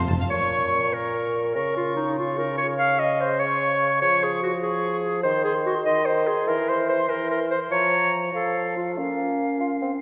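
From the first moment, a clarinet, a flute and a bassoon sound together in a fast, dramatic Romantic movement in B-flat minor, moving at 97 beats per minute in a straight 6/8 with a restless, urgent mood. The clarinet carries a clear, close and forward second line, ranging from its middle register up to F5. Above it, a silvery metal flute adds an airy, expressive counterline high in its range, with gentle vibrato and soft attacks, sitting further back in the balance. Beneath them, a mellow bassoon provides the accompaniment with light vibrato, prominent in the mix, and stops just before the others at 9.9 seconds. The harmony moves from B-flat minor through D-flat and C chords before settling back on B-flat minor, all heard from further back in a reverberant concert hall, in a short passage cut from a longer piece.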